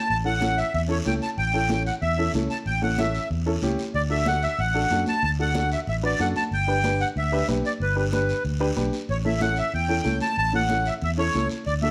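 A moderate large-studio reverb frames this joyful, festive cumbia fragment, cut from a longer piece, with a sweet, reedy accordion carrying the melody up front in its light tremolo tuning. An amped, up-front fingered electric bass and a woody, slightly detuned upright piano in accompaniment move through A, D and G. Bright, high-tuned congas played with soft hands sit in the background beside a raspy guiro.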